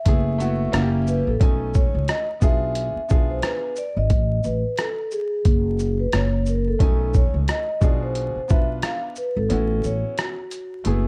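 Nocturnal and smoky, this jazz-hop excerpt moves at 89 BPM with a swung 16th feel, as a mellow, ringing soft-mallet vibraphone carries the melody over clear, vintage upright piano chords moving through F#m11, B13 and G#dim7, a woody pizzicato upright bass sits up front, and a compressed boom bap kit of thumpy kick, hi-hat, rim click and shaker carries 12-bit sampler grit, its kick dropping out at 9.5 s, the whole mix set in a dark small room with vinyl crackle.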